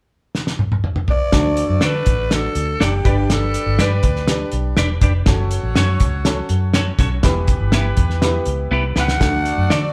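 Danceable and uplifting, this short excerpt of uptempo 1960s-style soul moves at 122 BPM in a straight 4/4 feel in D major, with the band playing live together in one room under a moderate studio reverb. A cloth-damped, thuddy drum kit opens with a fill at 0.3 seconds, its fat snare, tight kick, hi-hat and toms sounding gritty, saturated and up front with a rolled-off top, and it fills again near the end. A raspy alto saxophone enters at 1.1 seconds to carry the melody with clear vibrato and a pop-style edge. At 1.3 seconds more of the group arrives on a D chord, with a round, foam-muted fingered electric bass sitting dark and forward, a woody upright piano with short sustain comping underneath, and a distant, roomy horn section playing a jazz-style second line. The saxophone drops out after 4.5 seconds and returns at 9.0 seconds. From 1.8 seconds a clean, picked electric guitar adds compressed stabs bathed in spring reverb as the chords move from G through F#m and Em before settling back on D.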